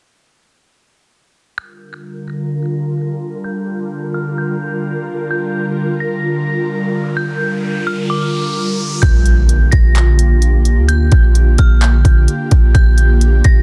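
A metallic FM bell carries the melody from 1.6 seconds in this dreamy, floating excerpt of atmospheric cloud-rap, its inharmonic ring shaded by chorus, low-pass filtering and digital delay, while an ethereal pad of detuned sawtooth and triangle voices holds sustained chords with slow attack, built-in reverb and sidechain pumping. At 129 BPM in Bb major with a half-time feel, a riser leads into an impact at 9.0 seconds, where a trap kit arrives up front with a hard-clipped kick, crisp hats and handclaps alongside a deep, boomy 808-style sine bass. It all sits in digital ambience under a dense, heavily limited modern master.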